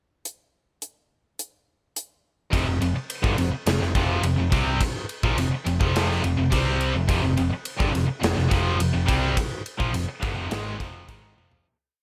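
A gated 80s drum kit opens alone with a pickup bar, its punchy kick, medium-tuned snare and bright cymbals sitting up front in a bright, gated stone room with a half big groove, until at 2.5 seconds a cranked, overdriven stack guitar and two tight distorted guitars, one double-tracked, enter in the background with a power-chord riff on F minor, doubled by a dark, round hollow-body short-scale picked bass driving eighth notes, making a driving, aggressive hard rock piece at 105 BPM in F dorian that fades out from 9.4 seconds toward a drum fill at 11.4 seconds.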